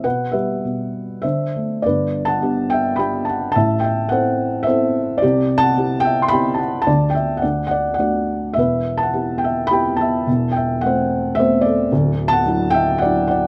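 Cool and moody, this short excerpt of lyrical classical solo piano moves in a flexible three-beat metre, stretched and pulled with rubato. A felt-muted upright piano carries the whole passage, its thick felt giving the tone a soft, dark and intimate character, while the action noise of the instrument stays audible up front. The playing ranges from deep bass notes up into the upper middle register, and the sound stays mellow and natural throughout. After a brief opening that settles from E minor toward D, the main passage begins at 1.8 seconds and wanders through G, A minor and C before reaching E minor at 8.6 seconds and closing on a D chord with an added ninth. Close, detailed microphones and light reverb keep the listener near the instrument, as if seated beside it.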